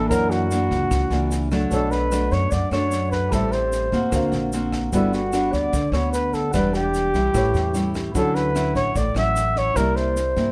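A mellow flugelhorn melody, soft in attack with vibrato and scooped notes, leads this relaxed, sunny bossa nova fragment in D major at 149 BPM, sounding distant and roomy yet up front over a fingerpicked, classical nylon-string guitar with fresh strings. A woody, thumpy pizzicato upright bass and an intimate baby grand piano, with audible action noise and short sustain in the background, fill out chords running from F#7b13 to C7, while a compact cocktail kit with a high-tuned snare, rim click and punchy kick joins at 0.1 seconds alongside a grainy, bright tube shaker. The sound is dry, with little reverb.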